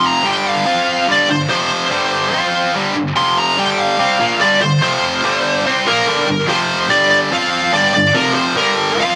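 Light reverb gives this short rock clip a bit of space around two electric guitars, one of which sits up front. At a straight 144 BPM in 4/4 and in G minor, the mood is menacing and driving. A tight, bright, distorted rhythm guitar, picked and double-tracked, carries the riff from start to finish, ranging from F2 to F4 and moving between G5 and F5 power chords and G minor. Over it, a smooth, warm, overdriven lead guitar plays the melody between Bb4 and C6, taking a solo from the opening until 6.1 seconds. The second section begins at 6.1 seconds and returns to the same G5 and F5 motion before the clip is cut off at 9.2 seconds.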